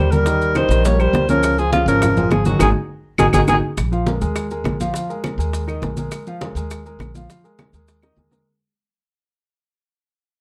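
Set in a moderate club reverb, this sophisticated, danceable Afro-Cuban jazz excerpt at 205 BPM opens with a subtone alto saxophone melody up front over a vibrato trombone second line with scooped notes, both stopping at 3.6 s during a band accent, while natural grand piano, a thumpy, woody pizzicato upright bass, thick-skinned low-tuned congas, grainy maracas, round bongos and dry claves carry on through a fade-out into a drum fill at 8.0 s.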